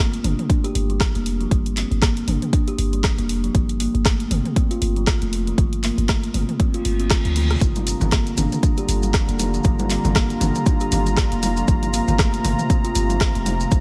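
A swung 118 BPM groove in 4/4 drives this hypnotic, spiritual afro house excerpt in G minor, where woody, airy kalimba arpeggios with delay and a deep, boomy 808-style bass pump under sidechain from the start, a dark-hatted deep house kit of handclaps, hi-hat, rim click and toms joins almost at once, an up-front deep electronic kick lands at 0.5 seconds, and after a reverse cymbal at 6.8 seconds a smooth, detuned sawtooth pad with chorus arrives at 7.6 seconds alongside soft-handed, band-limited congas and grainy maracas in the background, all in a dry mix.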